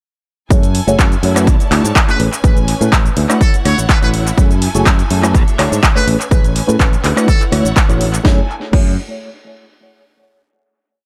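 An overdriven, punchy four-on-the-floor kick and a house kit of cracking snare, clap, rim, shaker, hats and crash drive this groovy, sensual filtered disco house piece at 124 BPM in F# minor with a light 16th-note swing, as a growly, bright fingered electric bass plays a funky syncopated line, a reedy, worn, slightly out-of-tune electric piano adds dotted-rhythm chords with fast tremolo, phaser and tape echo, a distant, lush string section holds sustained chords, and a buzzy muted trumpet section enters at 2.1 seconds with short phrases before the echo-heavy mix, pumping with sidechain, settles on a final F#m9 chord at 8.2 seconds.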